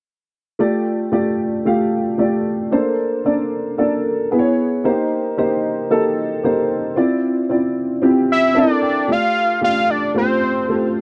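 A dry, close 1970s-style studio sound with a snug booth ambience frames this breezy, upbeat pop fragment, where a dark, boxy baby grand piano with short sustain and analog chorus carries lush extended chords up front until, at 8.3 seconds, a piano fill arrives together with a fat, detuned sawtooth lead with vibrato and portamento, which carries the melody to the clip's close.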